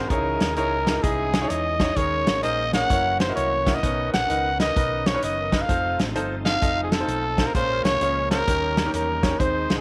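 A swung eighth-note lilt in 4/4 drives this uptempo gospel passage, cut from a longer piece, with an uplifting, hopeful mood. An acoustic country drum kit of hi-hat, punchy kick and medium-tuned snare comes in at 0.1 seconds and sits up front in a small, natural-sounding room, while a fingered electric bass adds a dark, round, amped low end. A growling trumpet carries the melody as the up-front solo voice, raspy and gritty with light vibrato and a pop-style delivery. Beneath it, a brilliant grand piano plays the accompaniment, and a very quiet tonewheel organ holds sustained chords with key click, chorus vibrato, light overdrive and a slow rotary speaker. A distant, roomy French horn section, also very quiet, adds classical-style sustained chords. Light reverb gives the whole a compact room ambience as the harmony moves from Dbmadd9 through Bmaj9 and F7 to a closing Eb7.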